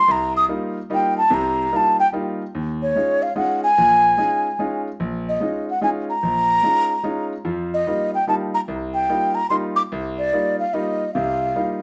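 Cool yet intense, this short jazz fragment swings lightly in three, with the flute carrying the melody up front and a concert grand piano supporting it from below. The breathy, mellow flute has a crisp attack, vibrato and rolled-off highs, and its expressive line sits in a plate reverb that gives it a soft sheen. The flute takes a solo over the first 2.5 seconds, with the piano entering at 0.1 seconds. The piano, also up front, sounds clear and smooth with a deep bass and a vintage character, and it sits a little lower in the balance than the flute. The harmony moves from F9sus4 to Eb9sus4 at 2.5 seconds and returns to F9sus4 at 7.5 seconds, all in a moderate studio ambience.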